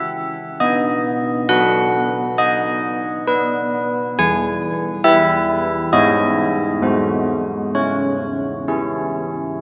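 A straight, unhurried pulse of 67 BPM in 4/4 carries this solemn, wintry church-bell tune in C# minor, tuned to A4 = 438 Hz. Old church bells play alone for the whole 9.6 seconds, spanning E3 to G#5. Up close, their bronze tone is clangorous and beating, with a minor-third overtone and the knock of a worn iron clapper. The harmony moves from a rootless C#m through B and E, then C#m/G# and G#7 at 6.8 seconds, before returning to C#m at 7.7 seconds. A cathedral reverb with a 4.9-second decay surrounds the bells, giving this classical fragment, cut from a longer piece, a cold, spacious stillness.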